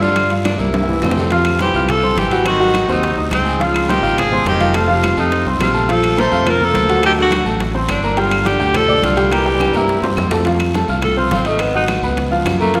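Danceable and lively, this short cut of Afro-Cuban jazz moves at 210 BPM in a straight 4/4, centred on F major. An up-front tenor saxophone carries the melody with light vibrato and scooped notes, shadowed in the background by a breathy, whispered baritone saxophone on a second line that stops at 10.0 seconds. A concert grand piano with deep bass and a smooth tone supplies the accompaniment, while a punchy, direct fingered electric bass anchors the low end. Underneath sits a bed of percussion: damped, thin-skinned congas, round low-tuned bongos, ringing metal-shell timbales, woody claves and a raspy guiro, all kept quiet or in the background. Drum fills mark the turns near 0.6 and 9.6 seconds, the harmony wanders through chords like Dbmaj9 and G9sus4, and from 10.5 seconds the tenor saxophone takes a solo, all bathed in a lush concert-hall reverb.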